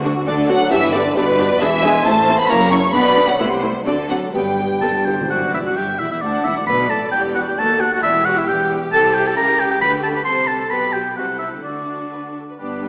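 A quick classical-period symphonic movement in G major and 2/4, running at roughly 123-137 BPM with a rubato feel, this graceful, spirited passage is cut from a longer piece. An expressive, distant violin section carries the melody with vibrato, while a second, rich and focused violin group traces its own line over warm viola accompaniment, intense cellos and lush double basses. A pure, straight-toned flute sits in the background and a dark, roomy French horn section holds sustained chords until about 5.0 seconds, returning only in the closing moments. A smooth, up-front oboe takes over a second line from 4.8 seconds, just after very quiet, articulate timpani struck with hard mallets play a fill starting at 4.3 seconds. The harmony opens around G and dominant chords before turning toward E minor, passing through a C#dim7 and coming to rest on D. The sound is bathed in wet concert hall reverb yet has a small-speaker character.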